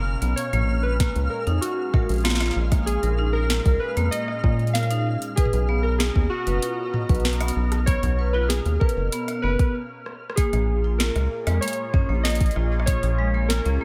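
Glitchy and melancholic, this IDM excerpt moves at 96 BPM in a straight 4/4, settled in Bb phrygian with its tuning a touch below standard pitch. A rubbery, hollow square bass sits up front from the start beneath a swirling, detuned analog pad treated with phaser and chorus, while a grainy, flickering texture hovers in the background until 9.8 seconds. A vibraphone struck with medium hard mallets rings out metallic arpeggios through tape echo, and warbling lo-fi synth keys carry the nostalgic melody, roughened by 12-bit sampler grit, chorus and dub echo. The booming analog drum machine brings crisp snare, metallic hats, rim clicks and toms with the air of a large room, joined by a deep, up-front electronic kick. The harmony shifts from Bbm7 to Bmaj9 and back, and after a brief stop a drum fill leads into the closing section at 10.4 seconds.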